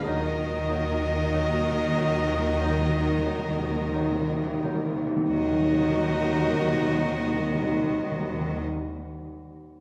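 A solemn, melancholic slow romantic movement for symphony orchestra opens with a hushed sul tasto violin melody over soft, rubato-slowed strings and a timpani fill. Clear oboe, airy silver flute and a second portamento violin line sound above, while faint clarinet and bassoon enter at 0.1 seconds and expressive violas, mellow French horns and barely audible dark trombones hold the harmony. Rich cellos and lush double basses anchor it all in a reverberant concert hall.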